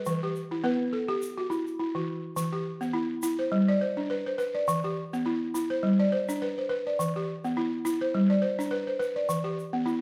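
Swung sixteenths in 4/4 give this short cut from a longer West African traditional piece a joyful, gently lilting pulse. Up front, a woody, dry balafon played with rubber mallets buzzes through arpeggios that alternate between E minor and G, while a grainy, bright egg shaker sits close and low beneath it from 0.1 seconds. A moderate recital-hall reverb lends the pair a sense of space.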